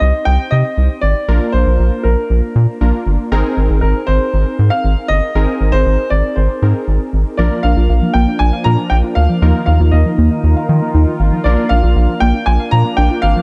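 A rubbery, up-front square bass, a natural-toned baby grand piano melody carrying tape echo, and round, detuned analog keys with chorus open this cool, melancholic 118 BPM synth-pop excerpt over a Cm–Bb–Abadd9 progression. At 7.4 seconds an evolving, resonant pad joins, along with a soft pluck playing arpeggios with chorus and tape echo in the background, all set in light digital reverb within a dark production.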